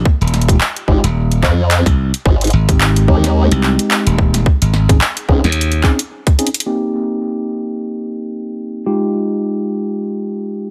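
A dry, up-front mix with little reverb opens this playful, funky glitch hop cut from a longer piece, moving at 109 BPM in F minor with a swung 16th feel. A glassy, growly slap bass, a detuned formant-sweep wobble bass with chorus, a tight overdriven electronic kick and a layered kit of cracking snare, bright hats and handclaps drive the first 6.7 seconds over Fm7, Abmaj7 and Abadd11, closing with a drum fill at 6.4 seconds. Mellow tine electric piano stabs, pumping through a sidechain with low-pass filtering and tape echo, run throughout and carry the final stretch alone over Cm7 and Fm9 until 10.7 seconds.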